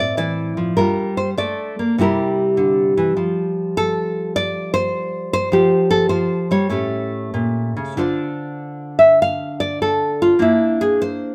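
A lone nylon-string guitar opens this short cut from a longer solo jazz piece, fingerpicked in a classical manner and placed up front. Its acoustic tone is warm and woody, with the character of old strings. The pulse sits at 101 BPM in 4/4 with a swung eighth-note feel, though the playing moves freely in rubato, giving a sophisticated, playful air. The harmony begins in F major, passing through Am, Gm9, C9 and Fadd9 before an A7 leads into D minor at 8.0 seconds, where the guitar takes a solo over Dm7 and Bb9 until the close at 11.3 seconds. A moderate stone room reverb surrounds the instrument, recorded live in a single room.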